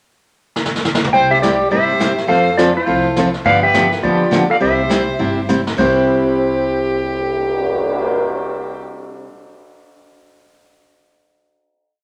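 A brushed drum fill opens this short, down-home western swing piece at 0.6 s, and at 1.1 s the band kicks in at a brisk 207 BPM in C major, moving through C, F and G7 before a closing chord at 5.8 s. Up front, a clean, twangy lap steel carries a motif-based melody with slide and volume swells, partly doubled in sixths, while a rich, focused fiddle with light vibrato bows a harmony line mostly in thirds. A picked acoustic guitar plays a four-to-the-bar rhythm, a woody, dark upright bass plays a two-beat root-and-fifth line under brushed backbeats and snare sweeps with a boomy kick, and a large studio reverb wraps the whole band.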